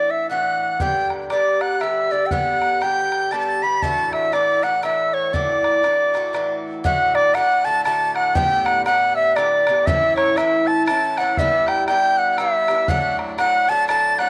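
A chamber-like echo with small-room ambience surrounds this lively, rollicking Celtic waltz in D major at 119 BPM with a swung lilt, where an airy, up-front baroque flute with a crisp attack carries the melody, a chiffy, tongued wooden whistle traces a higher second line, a metallic, double-strung Irish bouzouki picks the accompaniment, and a boomy, distant bodhran joins at 0.8 seconds, in a fragment cut from a longer piece.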